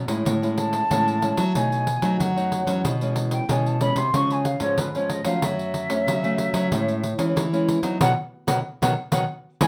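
Samba and choro in a sunny, playful mood at 93 BPM, this short cut from a longer piece sets a bright, full-bodied, up-front fingerpicked nylon-string guitar, its finger squeaks audible, over a warm, small fingerpicked nylon-string bass guitar and a jingly pandeiro, while from 0.6 s an airy, distant concert flute carries an expressive tongued melody with vibrato through chords moving from Amaj7 through B7, E6/B, C#, and F#m, all in moderate studio reverb, before the band lands a joint accent at 8.0 s on a B chord.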